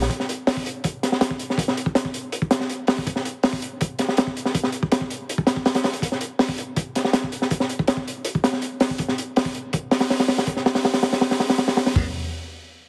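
A crunchy breakbeat drum kit sits up front through the whole of this 12-second clip from a longer drum and bass track, moving at 162 BPM in a straight 4/4 feel. The acoustic kit brings crash cymbal, hi-hat, kick drum, snare drum and toms, with a punchy kick, a high-tuned snare and dark cymbals. Its saturated, gritty character and rolled-off top give the breaks a smooth, dusky edge, and high-pass filtering thins the low end of each drum and of the kit's small-room sound. A moderate, lush hall reverb of about 1.6 seconds surrounds the beat, while a heavily compressed, radio-like sound and vinyl crackle lend the whole passage an atmospheric, nostalgic mood.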